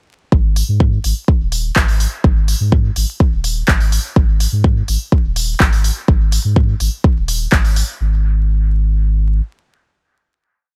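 Dub techno at 125 BPM in a cavernous, hazy mood, with a deep, up-front four-on-the-floor kick from 0.3 to 7.6 seconds, a layered deep house kit of smooth open hats and backbeat claps, and a clean, dark sine sub bass in a sidechain-pumped dotted rhythm, all over vinyl crackle, until the groove ends at 8.0 seconds and a final note lingers to 10.8 seconds.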